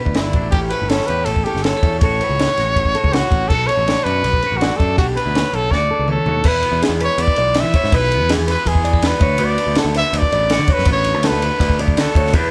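A clear, close-miked trumpet carries the melody up front in a pop style, its tone punchy with a touch of light vibrato, over a brisk 163 BPM math rock and midwest emo groove in D major with an intricate, playful mood. Beneath it, a compressed, twangy clean electric guitar spins bright picked arpeggios up high, while a second picked electric guitar sits in the background with an accompaniment that moves through extended harmonies like Em9, A69 and Bm9. A growly electric bass, heard both direct and amped, anchors the low end. The compact cocktail drum kit sits dry and up front, with a punchy kick, a high-tuned snare and dark cymbals, and a drum fill from 5.7 to 6.5 seconds leads into a second section that opens on an E chord. The band plays live together in one large studio room with moderate reverb, and the recording is a brief cut from a longer piece.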